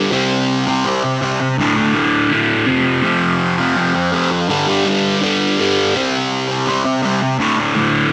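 Hazy and trippy, this short rock excerpt cut from a longer piece features a lone fuzz guitar, bright, distorted and double-tracked, sitting up front with phaser coloring as it moves through power chords on C5, D5, F5 and G5 in a moderate echo chamber reverb.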